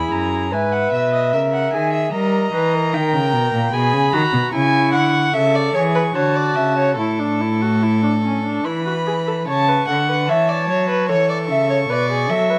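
Classical baroque-style fugue for string quartet in 3/4 at 74 BPM, elegant and lively, settling into A major from 4.5 seconds, with two dark, nasal, distant violins carrying the melody and a second line, a viola with light vibrato and a smooth top filling the accompaniment, and a rich, up-front cello on the bass, all bowed with gut-string period tone in a moderate stone room, cut from a longer piece with a new section arriving at 9.5 seconds.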